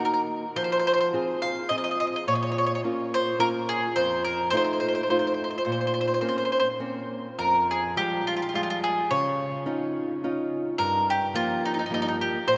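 A picked bowl-back mandolin with double strings carries the melody up front in this romantic, passionate Italian folk serenade at 106 BPM in 3/4, while a small, fingerpicked nylon-string guitar accompanies close beneath it, both bathed in the long, wet reverb of a church or concert hall as the music moves from Bb minor to F minor at 7.4 seconds in this brief fragment of a longer piece.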